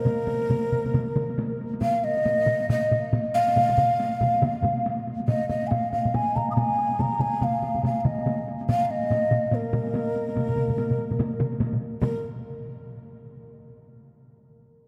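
Ceremonial and driving, this short cut from a longer Japanese traditional taiko ensemble piece moves in 4/4 with a swung sixteenth-note feel, speeding up from about 135 to 148 BPM. A breathy, mellow shakuhachi carries the melody from the very start, its bamboo, end-blown tone straight and hollow with a soft attack, ranging from Bb4 up to Eb6 and sitting up front in the mix despite a distant quality. A solo taiko drum struck with hard sticks sounds far off in a large room, while one taiko ensemble played with heavy sticks comes across close and dry. A second heavy-stick taiko ensemble, heard in a live room, joins at 1.8 seconds and thickens the percussive foundation. The whole performance is bathed in a cathedral reverb that gives it a vast, echoing sense of space, and a brief new section arrives at 12.0 seconds just as the parts draw to a close.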